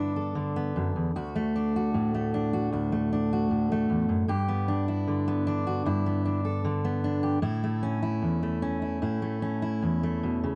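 A full-bodied, fingerpicked jumbo steel-string acoustic guitar with fresh strings plays alone and up front through this peaceful, warm folk fragment cut from a longer piece, moving freely in rubato across G, D and A chords from its low D2 to A4 in light reverb with a softened top end.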